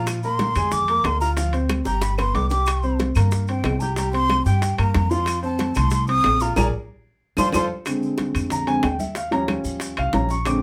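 A breathy, hollow jazz flute with vibrato carries the melody for the first 7.9 seconds of this lively, danceable Afro-Cuban jazz excerpt, backed by an intimate grand piano with audible action noise, a dark pizzicato upright bass up front, and a percussion bed of bright congas, round low-tuned bongos, ringing metal-shell timbales, saturated claves and grainy, distant maracas. Drum fills arrive at 1.7 and 6.6 seconds, the latter joined by a band accent, before the piano takes a solo at 7.9 seconds over Fm13 and Eb7 chords. The band plays live together in a small room with moderate ambience.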